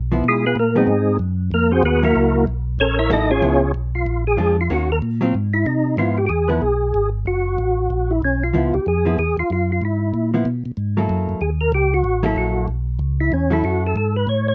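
A brisk swing at 188 BPM in 4/4, its eighth notes lightly lilted, drives this greasy, bluesy jazz fragment, tuned slightly flat to A4 = 435 Hz. A tonewheel organ carries the bass line through a slow rotary speaker, its round, dark tone marked by audible key click. Above it, a second tonewheel organ takes the melody and stands out as a solo for the first 6.0 seconds, its mellow voice sharpened by third-harmonic percussion and shimmering with chorus vibrato on the same slow rotary. A hollow-body jazz guitar comps up front, clean, compressed and fingered, as the harmony moves from a rootless Db7#9 through Ab7#9 and Gb7#9 colours before shifting at 6.0 seconds to a rootless G13b9 and eventually ending on Gbm7. The sound is intimate and detailed, with the instruments up front and just a touch of reverb.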